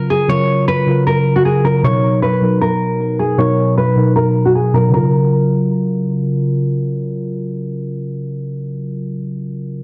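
This wistful, dreamy hip hop fragment moves with a half-time feel over soft major-seventh harmony. Up front, a nylon-string guitar carries the melody, fingerpicked with a deep classical tone, audible finger squeak, a low-pass filter and a digital delay. Alongside it, also up front, muted, felt-like synth keys provide intimate accompaniment, blending triangle and sawtooth tones with a noise layer, fast attacks that decay, chorus and a dark low-pass shading. A filter sweep colours the opening stretch until about 4.9 seconds. The guitar stops at 6.1 seconds, and the keys continue alone until 9.8 seconds. Light reverb and digital ambience surround a dense, heavily limited modern master.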